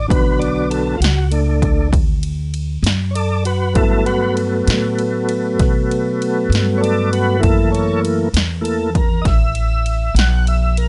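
A light reverb and a softened top end give this short excerpt of slow blues a smoky, mournful air, moving at 66 BPM in 12/8 in B minor, tuned to A4 = 445 Hz. Up front, a smooth tonewheel organ takes the solo with sustained chords through a slow rotary speaker and chorus vibrato, moving from Bm to Gmaj7 at 3.8 seconds and F#7#9 at 7.4 seconds. Beneath it, a woody, dark pizzicato upright bass and a punchy analog drum machine, also up front, with kick, snare and ride cymbal, hold the pulse.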